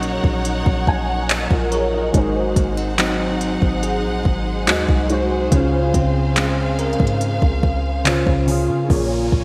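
A slow, straight 4/4 groove at 71 BPM sets a sensual, moody contemporary R&B mood, built on an up-front electronic drum kit of soft kick, smooth hi-hat and handclaps in gated reverb, anchored by a deep, boomy sine-toned 808-style bass. Over chords moving from Ebm7/Bb through Ab7 to Dbmaj7, a dark felt-muted upright piano with ensemble chorus plays accompaniment and a fill from 0.4 to 2.1 s, while a fingerpicked flamenco guitar spins delayed arpeggios, a studio string section holds expressive bowed chords with vibrato and portamento, and a very quiet bell-like tine electric piano adds texture. The bright 1980s-style digital production sits in a lush hall reverb, and an electronic downlifter arrives at 8.9 s as this fragment of a longer piece closes on Bbm7.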